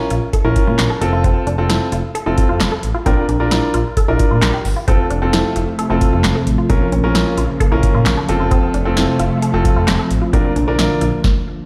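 Bright and nostalgic, this synth-pop excerpt moves at 132 BPM in F major, with an intimate, clear grand piano, juicy detuned blip plucks treated with chorus, phaser and tape echo, and a smooth, dark gliding synth bass with vibrato and portamento, all cycling through Bbm, F and Bb. An up-front analog drum machine drives it with a deep kick, punchy snare, handclaps and metallic hi-hats, and from 4.9 seconds a silky, warbling string machine adds slow-blooming sustained chords with ensemble chorus. The mix sits in a recital-hall reverb with a big, roomy ambience, and the music stops abruptly at 11.2 seconds.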